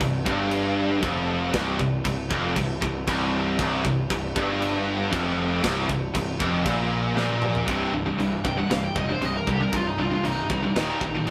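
Heavy and epic, this heavy metal excerpt in C minor at 117 BPM opens in half time with an up-front high-gain guitar riff, a tight distorted rhythm guitar behind it and a very quiet double-tracked guitar that drops out at 7.7 s, over punchy fuzz bass and a tight metal kit with bright china and crash cymbals, pumping room sound and toms, before a drum fill leads into a high-gain lead guitar solo with tape echo from 8.4 s, all captured as a rough rehearsal-room recording with moderate reverb.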